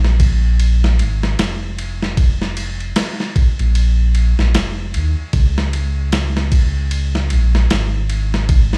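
Trip hop with a smoky, cinematic mood, this short excerpt pairs a round analog bass and a dusty soul sampler-style drum kit, both playing throughout its 8.8 seconds. The bass sits deep and dark with tube saturation, its sawtooth and sine tones sustained after a fast attack, while the compressed, gritty kit brings a thumpy kick, a medium-tuned snare and ride cymbal with a 16th-note swing. Both parts sit up front in a dry mix, the drums carrying the character of a large room.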